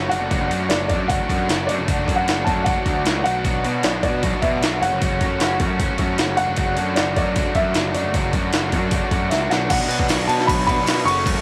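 Two overdriven electric guitars open this carefree, wistful indie rock excerpt at 154 BPM in D major, one biting with ensemble chorus and slapback echo, the other bright, both picking riffs in the background beneath a punchy, fuzzed-out electric bass. A dark, woody upright piano carries the melody with audible action noise and a slapback echo, while an up-front, gritty sampler-style jungle kit, pitched up and overdriven with a thumpy kick, drives the straight 4/4 feel. After a drum fill, a warbling organ-like string ensemble enters very quietly with sustained chords at 9.7 seconds, joined by a barely audible jingly tambourine, all set in light digital ambience.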